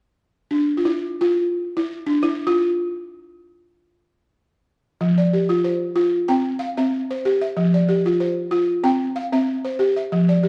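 A woody, buzzing balafon struck with soft rubber mallets sits up front, playing arpeggios from 0.5 seconds in this joyful West African traditional passage, cut from a longer piece. The 4/4 groove carries a light swing on the sixteenths. The balafon plays alone until 5 seconds, then its arpeggios move between F5 and C chords, all set in a generous recital hall reverb.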